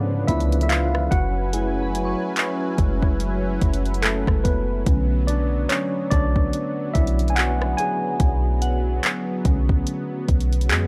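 A worn, slightly out-of-tune tine electric piano takes the solo through built-in speakers in this moody, longing excerpt of contemporary R&B at 72 BPM in F# minor with swung 16ths, moving from C#7b9b13 to F#m7 and Bm7 over a detuned sawtooth analog pad with chorus and sidechain pumping, a deep, round 808-style bass, an overdriven drum kit of handclaps, dark hi-hat, soft kick and rim click entering at 0.3 s, and a pure, warbling FM synth bell with chorus and analog delay in the background at 0.3 s and 8.6 s, all captured in a dry, gritty recording with digital ambience.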